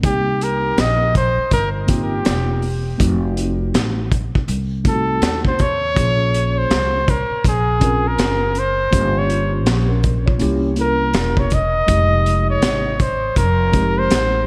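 A flugelhorn with light vibrato and scooped notes takes a present, up-front jazz solo through delay across this relaxed jazz-hop excerpt at 81 BPM with a swung 16th feel, backed by a mellow, clean tine electric piano, a woody pizzicato upright bass, and a crunchy, gritty breakbeat kit with a high-tuned snare, tight kick and gated reverb, all moving through chords such as Cm7, F7b9 and Bbm9 in a lush hall and a bright 1980s-style digital production.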